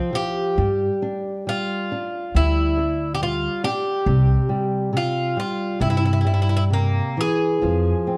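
A picked Irish bouzouki, metallic and double-strung, carries the melody from the first moment over a small, dark fingerpicked nylon-string guitar in this mournful, longing fado-style ballad, drifting in rubato at around 68 BPM. At 0.6 seconds a woody, thumpy pizzicato upright bass with gut strings joins, and the harmony settles on C before darkening to F minor at 7.6 seconds. All three instruments sit up front in a warm, dim production with light reverb, in this brief excerpt cut from a longer piece.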